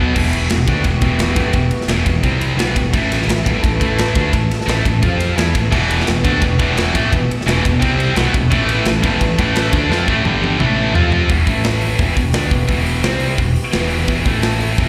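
Reedy, gut-toned bowed strings sustain chords in the background beneath a picked, high-gain guitar riff as this aggressive, dark heavy metal excerpt opens, with a growly, round fretless bass and a polished, up-front drum kit with bright cymbals and a tight kick entering almost at once, a second tight distorted guitar adding its riff from 5.7 to 11.3 seconds, a drum fill from 9.9 seconds leading into a new section, and the performance captured as a live gig through the venue's PA with recital-hall reverb.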